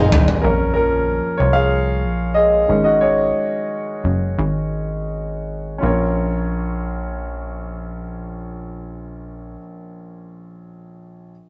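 Pop in Bb minor at 81-95 BPM, earnest and driving, cut from a longer piece, with the tempo slowing from 0.4 to 5.8 seconds as a clear, polished concert grand piano takes a solo over chords moving from Bbm to Absus4 and back to Bbm. A punchy, funky analog bass with a sawtooth and square-wave filter pluck, a moving notch and a fast, decaying attack sits up front beside the present, deep-bassed piano, stopping at 9.6 seconds while the piano carries on to 11.3 seconds. Moderate studio reverb surrounds the parts in a rough rehearsal-room sound with a muffled top end.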